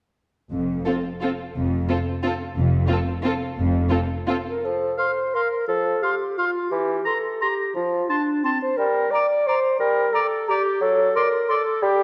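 A 3/4 pulse, played with rubato somewhere between 161 and 195 BPM, carries this short, festive and elegant classical passage in F major, cut from a longer piece. It opens at 0.5 seconds with bowed strings: a dark, lush cello section set up front and a smooth double bass section anchor the bass. At 0.9 seconds a rich violin section joins with the melody over a second violin line with portamento and an expressive viola section in accompaniment, all sung with vibrato. At 4.5 seconds the texture passes to the woodwinds, where a warm solo clarinet, placed up front, takes a second line between C4 and D5, and from 4.6 seconds a vintage-toned bassoon murmurs a soft-attack accompaniment below. An airy concert flute, sitting in the background, and a present, lightly vibrato oboe add high second lines as the harmony moves from F through a rootless C7/E, Gm and D/F#. A wet scoring-stage reverb surrounds the ensemble, and a worn, warbly cassette-tape pitch drift gives the whole recording an old, wavering character.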